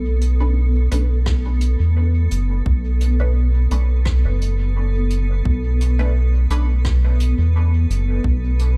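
A blurred, evolving granular cloud pad with 12-bit sampler grit and built-in reverb opens this deep, meditative ambient dub fragment at 86 BPM in B minor, joined from the start by a round, dark analog bass sitting up front, while rolled-off brush hi-hat and rim clicks with dub echo, muted filtered chord stabs treated with phaser, lush chorus and echo from 0.4 to 6.7 seconds, and a punchy, overdriven electronic kick arriving in the background at 1.3 seconds fill out a small room ambience.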